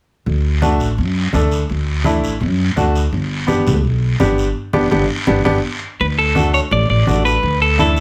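A twangy clean electric guitar, picked and compressed with spring reverb, steps up front at 6.0 seconds to carry the melody through the closing stretch of this sunny, danceable cumbia excerpt in D major. Before it arrives, a brilliant upright piano, polished and present, lays down the accompaniment from 0.6 seconds, moving from D to G at 3.1 seconds and back to D when the guitar enters. Underneath, a woody pizzicato upright bass with steel strings sits up front, joined from the start by low-tuned congas with thin skins and soft hands set back in a small room. A raspy guiro, distant and heard in a large room, adds a scratchy edge to the groove at 167 BPM in a straight 4/4. The band hits an accent together between 4.6 and 6.0 seconds, and light reverb gives the whole mix a gentle sense of space.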